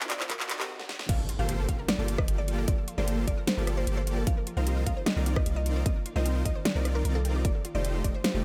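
A half-time 4/4 groove drives this lush, bittersweet future bass excerpt, where a brief build-up with a drum fill, a very quiet riser and a stop gives way at 1.1 s to a drop marked by an impact, bringing in a deep, dark 808-style bass beneath parts already sounding from the opening moments: a punchy electronic kick, a dubstep kit with a huge snare, claps, hi-hat, rim clicks and crash, a thick, pumping supersaw riff, a woody, bright mallet-like pluck melody with chorus and delay, a very quiet detuned unison pluck playing arpeggios, and an ethereal, warbling pad holding sustained chords as the harmony moves from Gm9 to Cm11 and F13.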